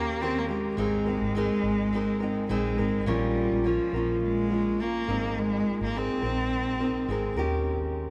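A moderate cathedral-style reverb fills this church or concert-hall recording, giving a short clip of easy-going, heartfelt acoustic pop with a light sixteenth-note swing its spacious air. Up front, a single bowed cello carries the melody with a nasal, focused tone and vibrato until 7.4 s, while a full-bodied, fingerpicked steel-string acoustic guitar with fresh strings provides the accompaniment. Beneath them, a vintage foam-muted electric bass adds a dark, round low end.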